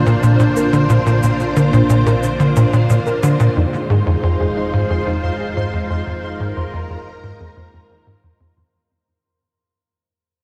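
A tight, punchy sequencer bass riff opens this mysterious, cosmic piece of ambient space music at 90 BPM in F dorian, its saturated, wave-folded tone sitting up front with subtle chorus and tape echo, while a lush vintage string machine holds sustained chords on Bb over a very quiet, fat and nasal analog bass. Just after the start, a soft, round pluck traces gentle arpeggios in the background with chorus and tape echo, and overdriven electronic shaker and percussion blips flicker behind it until 3.5 seconds. At 3.6 seconds the harmony moves to Fm7, and soon after a pulsing, tempo-synced gated texture enters high above with chorus and its own reverb. From 3.6 seconds a filter sweep moves across the analog bass as the pluck arpeggio and the whole passage fade out. A cavernous cathedral reverb and a cassette-tape grain wrap the sound in a vast, echoing space, and the passage is cut from a longer piece.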